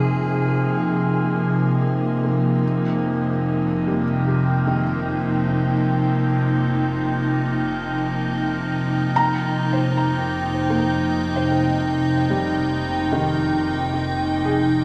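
An up-front, morphing wavetable pad holds detuned, shimmering chords in F minor through this serene, melancholic ambient piece at 74 BPM, while a soft felt-muted upright piano with audible action noise fades in with tape-echoed arpeggios and a dark, woody bowed double bass section fades in on a low F, all drenched in a dreamy plate reverb.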